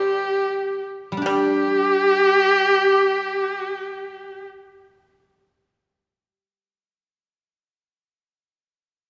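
Bathed in the wet reverb of a church or concert hall, this short cut from a graceful, pastoral Chinese traditional chamber piece moves in free time and slows over its first 1.2 seconds, as a clear, focused erhu sings the melody up front with vibrato and portamento beside a reedy, airy bamboo xiao heard at a distance, a bright, percussive pipa tucked in the background, and a ringing, silvery guzheng that enters at 1.1 seconds and carries on alone until 7.2 seconds.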